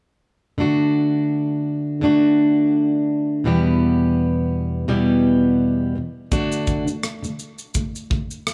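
A fingerpicked, plugged-in steel-string acoustic guitar opens at 0.6 s with a dark, woody, full-bodied jumbo tone and the character of old strings, moving from D to Em in an easy-going, carefree acoustic pop groove with a light sixteenth-note swing. At 6.3 s, as the harmony returns to D, a polished, airy studio kit enters lower in the mix with a punchy kick, rim click and shaker. The whole short cut sits in a small room with light reverb.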